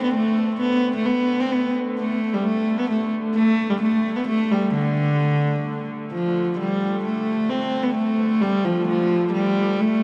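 Bathed in a wet cathedral reverb with a long 5.6-second tail, this dark, ancient, driving medieval fragment of a longer piece moves at 130 BPM in 3/4 in D dorian. Up front, a reedy, gut-string viola da gamba carries the melody with light vibrato and an airy, ringing bow, while a rich, nasal hurdy-gurdy holds a distant drone in the background, and a new section arrives at 6.1 seconds.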